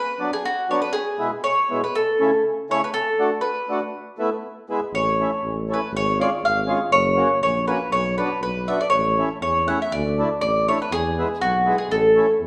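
A straight 2/4 pulse at 120 BPM drives this jolly, festive alpine dance-band piece in A major, cut from a longer piece. A woody, up-front mandolin carries the melody on picked double strings, while a reedy, full, close-miked accordion supplies the accompaniment, and a mellow tuba with light vibrato and a soft attack joins on the bass at 4.9 s. The band plays live together in one large studio room with a wet reverb, as the chords move from B minor through E and D harmonies toward a close on A.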